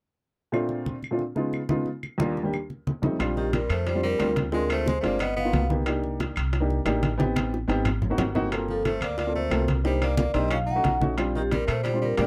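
A dry, metallic vibraphone played with medium mallets carries the melody of this danceable, sophisticated Afro-Cuban jazz excerpt in Bb major at a brisk 180 BPM, joined by an edgy, forceful tenor saxophone with light vibrato and scooped notes playing a second line in two passages starting at 3.4 and 8.7 seconds. A slightly detuned, woody upright piano opens at 0.5 seconds with background claves and bright, compressed congas, and at 3.2 seconds a dark, thumpy pizzicato upright bass with gut strings arrives up front alongside soft, round bongos and ringing timbales. Rich extended chords such as Dm7b5, G7alt and Gm11 move beneath a drum fill and a short piano fill, all captured in a close, intimate 1970s-style studio booth.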